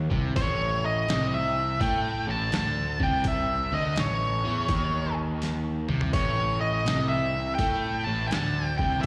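Driving and raunchy, this short cut from a longer piece blends blues rock power trio grit with southern rock swagger, riding a swung feel in 4/4. An overdriven semi-hollow guitar, double-tracked and hollow-bodied with a picked attack and slapback echo, lays down a low riff from the start. Alongside it, a fuzz picked electric bass sits up front with a bright, growly, overdriven tone, and a compressed, sampler-style boom bap kit, pitched down and gritty, supplies a thumpy kick, a medium-tuned snare, hi-hat and toms. From 0.4 s an octave-fuzz lead guitar carries the melody high above, dark, distorted and picked, also up front and touched with slapback echo. A drum fill at 5.4 s briefly stirs the groove, and the whole performance sounds like a live gig heard through the venue's PA, framed by recital hall reverb.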